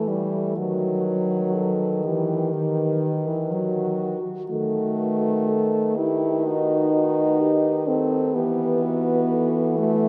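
A close-miked French horn carrying the accompaniment sits up front in this short excerpt of a lyrical classical piece for horn quartet, its mellow tone shaded with light vibrato and a soft attack. Beneath it a warm, present horn holds the bass, while a third horn sings a second line with vibrato, and the melody horn floats distant and roomy, very quiet against the others. The mood is solemn and yearning, moving at a rubato 61 BPM in 4/4, tuned to A4 = 438 Hz. The harmony rests on E minor, shifts to B7 over D# at 0.6 seconds, and returns to E minor at 8.4 seconds. All four horns sound together from the opening to about 10 seconds, bathed in a long, wet cathedral reverb.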